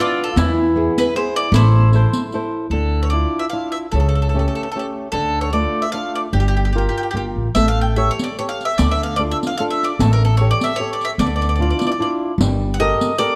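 Close, detailed microphones, light reverb and a faint mains hum frame this romantic, passionate Italian folk serenade in D harmonic minor, a swung, rubato 3/4 at 150 BPM, where a bright, double-strung bowl-back mandolin sings the picked melody up front over a second mandolin line that drops out at 2.5 seconds, a fingerpicked flamenco guitar with fresh strings and audible finger squeak, a woody pizzicato upright bass on steel strings, and a soft-handed riq whose jingling hits fall away after its opening bars and return at 7.6 seconds.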